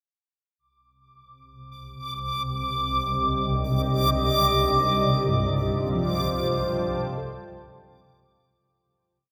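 A swarming, detuned low drone stands out in this unsettling dark ambient drone piece in free time and C dorian, joined by a deep, warbling pad with chorus moving slowly from Cm to F, a reversed, bright held high note, and from 5.3 seconds metallic bronze gongs playing three slow loops of unequal length that drift against each other, all set in a cathedral-like reverb.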